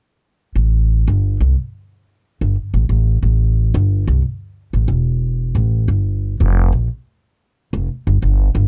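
A woody, thumpy pizzicato upright bass sits up front with tube-saturated grit, carrying this melancholic, cinematic trip hop excerpt alone from 0.6 to 8.7 seconds in a dry, cassette-tinged recording with a lightly swung feel.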